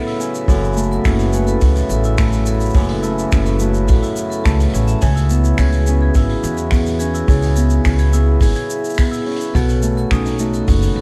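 This delicate folktronica excerpt at 106 BPM opens on a reedy, breathing pedal harmonium holding sustained chords beneath thumb-plucked, ringing Celtic harp arpeggios and a bright, metallic vibraphone second line with slow motor vibrato, the harp and vibraphone both carrying digital delay. A vintage brush kit of finger snaps, hi-hat and shaker with a rolled-off top slips in almost at once, and at 0.5 seconds a punchy kick drum arrives alongside a woody pizzicato upright bass sitting up front, as the chords move from F#m7 to C#m7 and then B7. The dark, warm production sits in a small room ambience.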